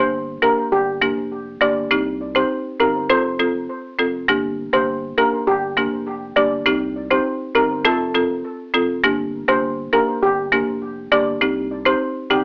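A bouncy, tough dancehall groove in G minor at 101 BPM opens with all three parts together: a steel pan carrying the melody, a folk marimba with hard mallets in accompaniment, and a saturated sub bass underneath. The steel pan, played with soft rubber sticks, has a shimmering, mellow metallic tone that sounds vintage and band-limited, sitting up front with cassette tape grit and a tape echo trailing its phrases between G4 and D5. The marimba is woody, dry and rustic, its hardwood bars struck bright and percussive, also placed up front with the same cassette coloring. Far beneath them, the sub bass is deep and thick, a triangle-like tone with a fast attack and sustained notes, held well back in the balance. The chords cycle through Gm, Cm and F, with a fresh pass through the progression beginning at 4.3 seconds. The whole piece has the hazy feel of a home cassette recording heard over AM radio, wrapped in moderate studio reverb, and this short cut ends at 12.4 seconds.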